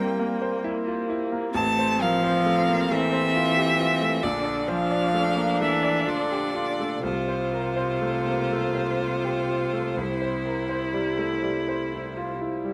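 Tender and serene, this slow, rubato romantic movement for piano quartet in F major sways in 12/8 at 41-45 BPM, with an intense, vibrato-rich violin singing the melody up front over a smooth, close cello second line, a focused viola and a brilliant, deep-bassed concert grand in accompaniment, all bowed strings and piano set in light reverb as the harmony moves from C7/G through Bbmaj7 to rest on C near 10.0 seconds in this passage cut from a longer piece.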